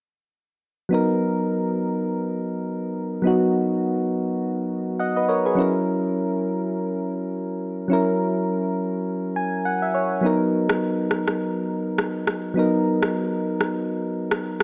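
Soft, round electric-piano-like synth keys carry this romantic, sunny afrobeats fragment in B major at 103 BPM with a swung 16th-note feel, their mellow, chorus-tinged chords moving from Bmaj7 to F#7 and back under light reverb. The keys add a short fill at 9.1 seconds, and an up-front electronic rim click joins at 10.7 seconds to carry the groove to the end of the cut.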